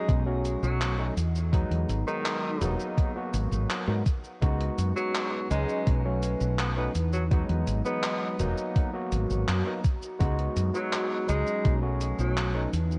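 Cassette-tape grain and a light reverb give this short vaporwave fragment a hazy, nostalgic cast. At a relaxed 83 BPM in straight 4/4, a distant, roomy tenor saxophone with light vibrato and tape echo carries the melody. Beneath it, a barky, gritty tine electric piano, overdriven through a combo amp with subtle chorus and tape echo, plays the accompaniment. A very quiet, warbling pad of detuned synth waves holds sustained chords with a slow attack, chorus and phaser, while a round, woody fretless bass sits up front with tube saturation. A thumpy, overdriven electronic kick drives the beat until 11.8 s, alongside a sampler-style drum machine of cabasa, handclaps and hi-hat bathed in gated reverb, as the harmony circles through B7, Emaj7, G#m9 and C#7sus4 before landing back on B7 at 11.7 s.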